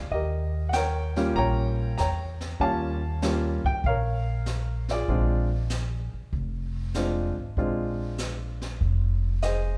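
An upright piano and a plucked upright bass open this jazz piano trio fragment together, with a brushed drum kit joining at 0.1 seconds. The mood is warm and sophisticated, carried by a swing feel in four. The piano takes the melody with a woody, short-sustained tone placed up front, while the dark, steel-strung bass holds the low end close by. Played with brushes, the drums sit lower in the balance, with a high-tuned snare, hi-hat and a boomy kick heard in a small, natural-sounding room. The harmony moves from Eb9 to Bb9 at 5.1 seconds, and a light reverb gives the trio a gentle sense of space through to the cut at 9.8 seconds.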